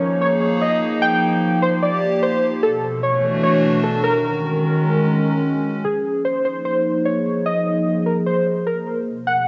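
A hollow, flute-like pad and warbling lo-fi synth keys open this eerie IDM excerpt together. The pad holds slow-attack sustained chords with long release, while the detuned keys carry an intricate melody with fast-attack, decaying notes that have a nostalgic, full-bodied character. Both parts sit up front and carry chorus, and the keys add tape echo. Swung sixteenths give the 4/4 pulse a loose, shuffling feel beneath harmonies that move through extended minor and suspended chords. At 5.9 seconds a filter sweep on the pad marks a new section that runs to the close at 9.5 seconds, all set in a light digital ambience.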